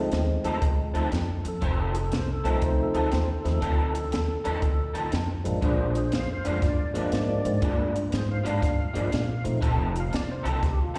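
A woody, growly upright bass sits up front in this gritty, soulful electric blues shuffle at 120 BPM in F, cut from a longer piece and heard as a live gig through the venue's PA with recital hall reverb, joined by a fat, lightly overdriven tonewheel organ with key click, chorus vibrato and slow rotary speaker, a bright, twangy, slightly broken-up picked guitar riff through a small old amp with ensemble chorus and slapback echo, and a dark, compact cocktail drum kit with a punchy kick and high-tuned snare, as the harmony moves from F7 to Bb7 at 5.6 seconds and back to F7 at 9.6 seconds.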